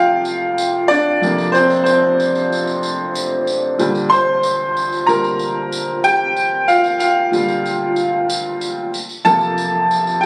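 Hopeful and warm, this short cut from a longer piano-driven pop piece rests on a clear, woody upright piano that sits up front, moving from Fsus4 to Bb6 at 3.8 seconds and back to Fsus4 at 8.9 seconds. A jingly tambourine joins at 0.2 seconds, far quieter in the mix and carrying the acoustic character of a live room. Captured on a phone in the room, the sound has light club reverb and compression.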